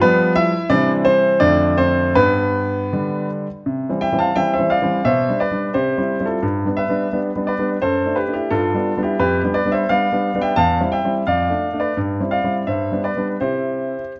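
Recorded up close in a recital hall with moderate reverb, this elegant, graceful fragment of a classical-period piano sonatina in C major features a clear, intimate grand piano, up front with audible action noise, playing solo from E2 to A5 at 78-88 BPM in 2/4 with a rubato feel, as its phrases pass through G7, D/F# and C/G before closing on C at 13.4 seconds.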